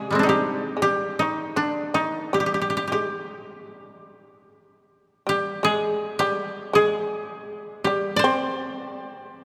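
A woody, up-front koto carries the melody in this austere, meditative fragment of traditional Japanese chamber music, unfolding in free rubato over a buzzing, percussive plectrum-plucked shamisen second line, while a very quiet, mellow second koto adds accompaniment only from 0.0 to 0.7 s, all set in the long wash of a church-like room.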